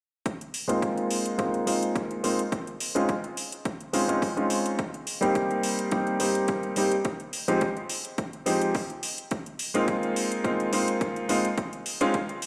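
Played through a big sound system in a bare stone room with a plate reverb, this sunny, feel-good nu-disco clip with a swung sixteenth-note feel sets a punchy, overdriven electronic kick and metallic, overdriven electronic hi-hats beneath an up-front, brilliant vintage grand piano whose long-sustained chords move from Ab6 through Dbmaj7, Cm7 and Fm7, pumping against the sidechain, trailing dub echo and sweeping through a low-pass filter.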